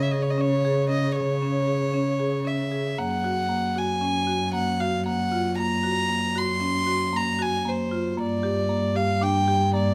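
A lightly reverberant recording presents a short cut from a longer contemporary instrumental piece, playful and restless, moving at 115 BPM in 5/4 with a straight feel. A single bowed violin carries the melody up front with an airy, floating tone, while marimba arpeggios on rosewood bars sound woody and percussive under medium hard mallets, and one dark cello, bowed sul tasto with vibrato, holds the bass. The harmony moves from Dbm to Gb at 3.0 seconds and turns to Gm at 8.2 seconds.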